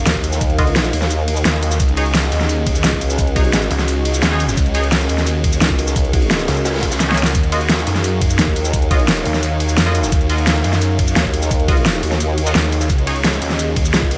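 A light reverb sits over this dark, tense slice of technical drum and bass, cut from a longer piece and driven by a straight groove in four. Two up-front basses carry the weight: a snarling, overdriven saw bass with a growling, detuned unison edge, and a formant-sweep wobble bass thickened by chorus and tube saturation. The drums stack a knocking, tape-warm electronic kick with an overdriven dubstep kit whose huge snare, hi-hat, ride and shaker ring in studio reverb, while a very quiet, gritty breakbeat kit adds hi-hat and snare crunch with a rolled-off top underneath. In the background, a moody analog pad holds sustained chords with chorus and sidechain pumping, and an ethereal pad drifts above it with phaser, ensemble chorus and its own reverb. A nasal, band-passed chord stab with tape echo and a cassette tint cuts in from 0.6 seconds, drops out at 4.8 seconds and returns during a short drum fill at 7.0 seconds, as the harmony moves between Ebmadd9 and Dbsus2.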